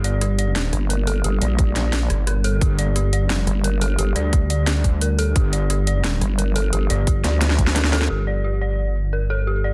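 Dark technical drum and bass at 175 BPM in G minor, this tense, dark excerpt sets a deep, moody pad and an eerie, inharmonic FM bell arpeggio over a thick, detuned saw bass, with the pad and bell pumping against the sidechain and the bell trailing tape echo. A nasal, resonant vowel-sweep wobble bass cuts in from 0.7 to 4.1 seconds and again from 6.2 s, while a tight, up-front electronic kick joins at 1.6 s beneath an overdriven kit of cracking snare, bright hats and rim clicks. A drum fill closes the first section just before a new section arrives at 8.1 s, all within a dense, heavily limited master and light digital ambience.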